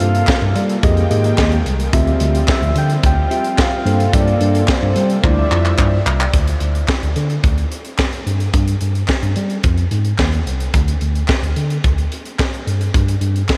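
A dreamy, late-night slice of early-eighties boogie funk opens with a round, dark synth lead carrying the melody over mellow electric piano chords and a lush, nasal unison pad, all of which drop away after about 6 seconds, as a drum fill rolls through, to leave the phaser-tinged electric piano bass, the tight drum kit with its punchy kick and high-tuned snare, and a very quiet, crisp group handclap grooving on in a mix soaked in reverb.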